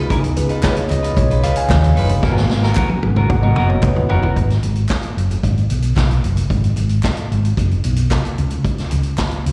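This excerpt of a driving, danceable disco groove at 112 BPM in G# dorian opens with a mellow tine electric piano taking a solo over a clean, picked electric guitar, both carrying a slapback echo, while a dark, round hollow-body bass sits up front from the first beat. The vintage acoustic kit arrives almost at once, with a punchy kick, medium-tuned snare, hi-hat, toms and handclaps under a rolled-off top, and a drum fill runs through the second half of the opening passage. Low-tuned congas with thick skins are struck with hard hands but kept very quiet, and a crisp group handclap with its own slapback echo sits in the background. The chords move from C#9 to G#m9 before the electric piano and guitar stop at 4.4 seconds, leaving bass, drums and percussion to ride G#m7 and then drop the harmony entirely near the end. The recording sounds like a live gig heard through a venue's PA, with small room ambience and a recital hall reverb.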